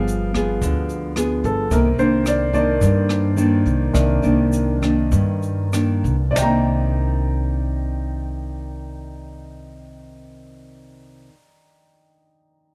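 This dark, dry recording, with little reverb, is a short cut from a longer bossa nova in C minor, smooth and wistful at 94-110 BPM in a straight 4/4. A clear concert grand piano with deep bass sits up front and takes a solo passage through the opening stretch, and the tempo slows from 1.7 seconds as the harmony moves from G7b9 to Cm9. Beside it, a thumb-plucked nylon-string guitar adds a warm, classical touch, and a woody pizzicato upright bass with steel strings anchors the low end, both also up front. A jazz kit played with brushes, with a medium-tuned snare, rim click, hi-hat and boomy kick, plays alongside a grainy, bright tube shaker set in the background, and both play only until about 6.5 seconds. Piano, guitar and bass then carry on into a second passage, and the piano sounds alone at the close until 12.7 seconds.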